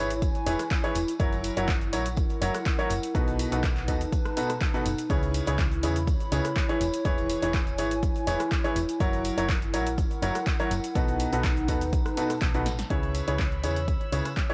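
A lo-fi, cassette-recorded sound with light digital ambience frames this bittersweet, soulful piano house excerpt in C# minor at 123 BPM, where a bright, brilliant baby grand piano riff sits up front over a round, punchy FM bass, a warbling, nostalgic tape-like pad with chorus, and a chord cycle of E6, F#7, B7 and C#m7, all three pumping to the sidechain. An overdriven, up-front electronic kick and a punchy analog drum machine of handclaps, hi-hat, rim click, shaker and snare carry the groove with a large-room, tape-worn character, while a tambourine ticks in the background. After a drum fill at 12.7 seconds, a dark, floating studio string section enters at 12.9 seconds with soft, bowed chords and 12-bit sampler grit as the pad drops away.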